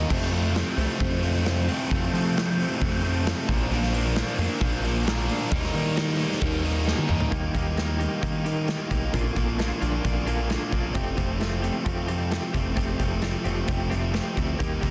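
Dark and brooding, this quiet-loud alternative rock excerpt drives at 132 BPM in a straight 4/4, with a biting overdriven guitar riffing up front over a growling, overdriven picked bass and a big rock drum kit with a punchy kick and bright cymbals. A crunchy, phaser-treated second guitar also plays a riff until 7.3 s, as a drum fill from 6.9 s closes the opening section. From 7.3 s a clean semi-hollow guitar joins with hollow-bodied arpeggios treated with tremolo and tape echo, as the chords move from F through Bb and Eb to a closing Fadd9. The mix is dry and dense, with a heavily limited modern master.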